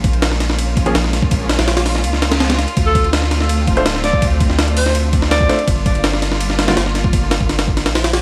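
A gritty, pitched-up breakbeat with a thumpy kick, high-tuned snare, hi-hat and ride sits up front, driving this frenetic yet atmospheric drum and bass and jungle excerpt over a deep, round dub sub bass and lush, bowed symphonic strings holding sustained chords. A breathy alto saxophone carries a whispered, intimate melody with scooped notes from 2.9 to 5.7 seconds, roughened by 12-bit sampler grit and dub echo, while a very quiet concert grand piano adds stabs at 0.9 seconds and again from 3.8 seconds. Vinyl crackle and a light, small-room reverb give the cut a dusty, close feel.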